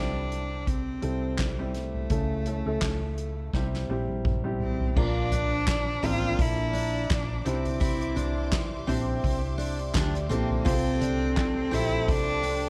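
Uplifting and hopeful, this piano-driven pop excerpt with a light swing sets a clear, focused cello melody with vibrato over a woody upright piano, a round, punchy hollow-body electric bass and a soft-mallet drum kit with a boomy kick and fat snare, which enters at 0.3 seconds and plays a fill leading into 5.0 seconds. From there a full-bodied fingerpicked acoustic guitar riff, a mellow French horn section with delay and a dark, sul tasto string section holding chords in the background join in, while very quiet, crisp group handclaps appear at 5.7 seconds. Light studio reverb and a worn, warbling old-tape pitch drift color the sound.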